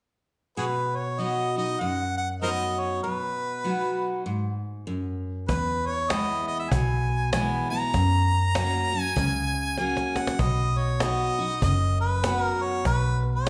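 An easygoing, down-home slice of honky-tonk and classic country opens at 0.6 seconds with a clear, up-front harmonica carrying the solo melody over a bright, full-bodied picked dreadnought acoustic guitar. The harmonica plays in a jazzy style, with light vibrato, soft attacks, scooped notes and occasional tongue slaps. At 5.5 seconds a dark, round, foam-muted electric bass with a vintage amped tone joins, along with a snappy cajon played with soft hands, its snares giving a close and dry crack. The swung eighth-note feel keeps things relaxed as the chords move from B to E and F#. A cajon fill at 9.8 seconds leads into a new section that returns to B. The room adds a wet, large-studio reverb heard from further back.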